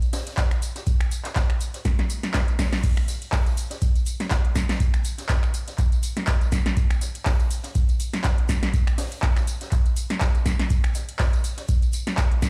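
An analog drum machine opens this raw, trippy house cut at 122 BPM with a swung 16th feel, laying down a punchy snare, metallic hats, claps, finger snaps, tambourine and crash, all tape-warm. A natural brush kit with a high-tuned snare, hats and shaker slips in at 0.1 s and sits in the background with sidechain pumping and high-pass filtering. A deep, up-front electronic kick enters at 0.4 s to anchor the groove. After a drum fill from 1.9 s the drop lands at 2.8 s, the kick and drum machine ringing through the stone reverb of a bare room as if played on a big sound system.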